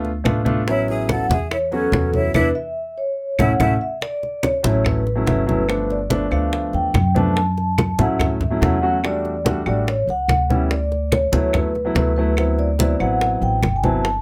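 Afro-Cuban jazz with a sunny, lively mood, moving at a brisk straight pulse in four, cut from a longer piece. A mellow, ringing vibraphone carries the melody from 0.7 seconds, shadowed at first by a breathy, bright jazz flute with a crisp chiff that drops out at 3.7 seconds. Underneath, a polished, up-front upright piano comps with long sustain, while a dark, woody pizzicato upright bass anchors the harmony. Low-tuned congas with a thick skin, tight high-tuned bongos and woody claves set back in the mix drive the percussion. Around 2.3 seconds the band hits an accent, with a drum fill and a piano fill leading into a new section at 4.0 seconds, where the chords turn richer with ninths, elevenths and thirteenths under light reverb.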